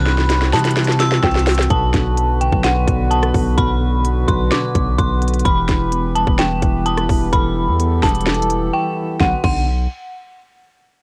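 This is a melancholic, brooding trap-style hip hop piece in B phrygian at 128 BPM with a half-time feel, cut from a longer work and carrying a home-recorded cassette character with light reverb. The melody comes from a dark, detuned synth bell, eerie and inharmonic with a fast attack and long release, while a bright, metallic FM bell rings in the background as a second line only until 1.7 seconds. Beneath them a mellow, clean tine electric piano heard through built-in speakers supplies accompaniment, and a reedy, breathing hand-pumped harmonium holds sustained chords with a boxy small-room sound. A deep, sine-like 808-style bass with long decaying notes sits up front, alongside an overdriven electronic trap kit of hard-clipped kick, sharp snare, crisp hi-hats, rim clicks and crash cymbal. The drums open with a fill, a brief break arrives at 8.7 seconds, and the harmony moves from C to B minor and E minor before settling back on B minor.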